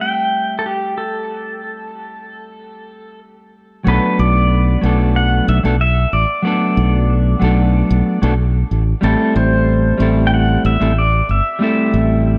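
Sunset chillout at a relaxed 93 BPM in 4/4, this warm, unhurried excerpt drifts between Am7 and Bm7 chords. A dark, clean fingered electric guitar carries the accompaniment through tape echo, with a filter sweep over the opening 3.9 seconds, while a pedal steel guitar played with fingerpicks sings the melody in slide and volume swells, its compressed tone touched by digital delay. At 3.9 seconds a bright, growly fingered electric bass enters up front, and the mix sits in light reverb and digital ambience.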